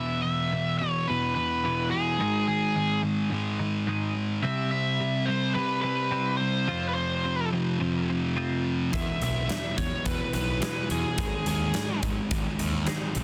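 A dry, dense, heavily limited mix opens this anthemic, cathartic alternative rock excerpt at 107 BPM in 4/4, where a biting, overdriven lead guitar carries the melody over a double-tracked fuzz guitar riff and bright twelve-string arpeggios with subtle chorus, until a fuzzy picked bass and a huge, punchy arena drum kit with hi-hat, kick and snare crash in at 8.9 seconds, moving through power chords on E and G#.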